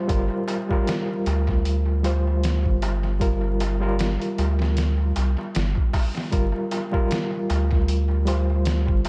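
Brooding and hypnotic, this trip hop fragment, cut from a longer piece, sits at 77 BPM in G minor with a swung sixteenth feel, resting on a single Gm7 chord throughout its 9.1 seconds. A deep, round analog bass with tube saturation sits up front beside a gritty, pitched-down sampler-style drum kit with a thumpy kick and medium-tuned snare, while a reedy, overdriven electric piano through a combo amp shimmers with fast tremolo and lo-fi sampler grit. A crisp metal-shell darbuka sounds distant, as if in a large room, and the echo-heavy mix carries tape echo and vinyl crackle over an otherwise dry sound.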